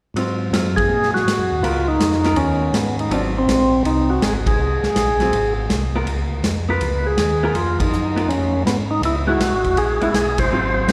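Soul jazz organ trio in a greasy, soulful mood, swinging at 162 BPM in 4/4 across this short cut from a longer piece. A mellow tonewheel organ carries the bass line from the very start, its round, dark tone clean with a touch of key click through a stopped rotary speaker. A vintage drum kit and a hollow-body jazz guitar join at 0.2 seconds, the kit punchy in the kick with dark cymbals and a rolled-off top, while the guitar comps with a picked, compressed, hollow-bodied electric sound. At 0.8 seconds a percussive tonewheel organ takes the melody up front, warm and full with second harmonic percussion and a slow rotary speaker. The band hits accents together at points such as 4.4 and 7.7 seconds over rich chords like Ab13 and Db9, all bathed in a long, wet church reverb that gives the trio the air of a large hall.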